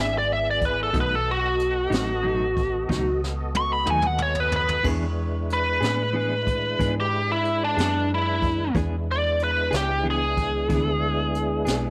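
A biting, overdriven lead guitar carries the melody in this laid-back, swaggering slow blues in 12/8 at 62 BPM. Beneath it sit a clean, compressed electric guitar with tremolo, a tonewheel organ holding sustained chords through a slow rotary speaker and chorus vibrato, and a dark, foam-muted fingered bass, moving from E7 to B7 in E mixolydian. Brushed jazz drums with dark cymbals, a high-tuned snare and a boomy kick enter at 0.6 seconds, play a fill from 2.9 seconds, and lead into the up-front lead guitar's solo at 4.8 seconds, all set in light studio reverb.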